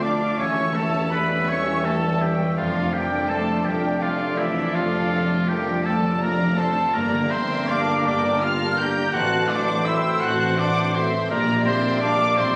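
A clear oboe sits up front in this yearning, elegiac slow romantic orchestral movement, a 12.6-second fragment cut from a longer piece in 12/8 with a free, rubato feel. A dark, woody violin section carries the melody with vibrato, played sul tasto and heard from afar. A second, lush violin section and a metallic silver flute with gentle vibrato join the oboe in weaving supporting lines. A very quiet viola section floats beneath, while soft-attack cellos and double basses join a roomy tuba to form the bass, with the cellos and tuba sitting back in the mix. Mellow French horns and a tight, close-miked trombone section hold hushed sustained chords, a distant trumpet adds background stabs, and a bright, ringing concert harp plays fingerpicked arpeggios. The recording is soaked in hall reverb with a club-like ambience, captured on a phone in the room, and carries audible lossy compression artefacts.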